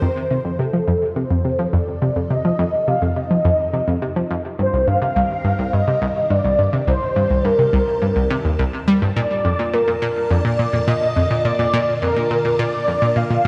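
Bathed in a wet concert hall reverb, this mysterious, expansive stretch of sequencer-driven space music, cut from a longer piece, moves through F7, Cm7 and Bbmaj7 in a straight 4/4. Up front, a round, horn-like synth lead sings a warbling, full-bodied melody with vibrato, chorus and tape echo, while a bright analog pluck with a fast attack and short decay drives a low riff through ring modulation, filter sweeps and its own tape echo. In the background, a swirling, vintage string machine fades in across the whole 13.5 seconds, holding slow-attack chords colored by ensemble chorus and phaser.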